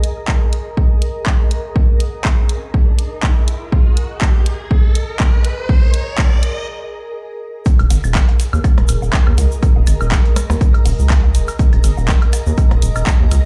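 A blurred, evolving granular cloud pad with built-in reverb and sidechain pumping and a punchy analog drum machine's handclaps and hi-hat open this cool, clinical minimal techno excerpt at 122 BPM together. They are soon joined by an up-front electronic kick, a very quiet pulsing gated texture and a riser that builds until a stop at 6.7 seconds. At 7.7 seconds the drop brings in a rubbery, hollow square bass with tube saturation and sidechain pumping, a gritty, overdriven sampler-style kit with high-passed hats and snare, a grainy tube shaker, and layered woodblock, claves and blips through digital delay. Everything sits over a single Ebsus4 chord with a 16th-note swing, played back in a bare room with large reverb.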